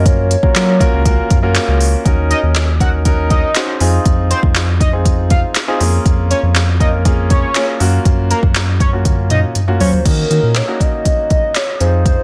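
A straight 4/4 dance-pop groove from a smooth R&B drum kit with soft kick, woody snare, handclaps and crash drives this confident, bittersweet excerpt, as a round, deep analog bass and an intimate concert grand piano pulse with sidechain pumping, a hollow, woody clarinet-like synth lead with chorus opens briefly and returns at 9.8 seconds, and a fat, detuned analog lead with dub echo carries the melody from 2.3 seconds in a dry mix.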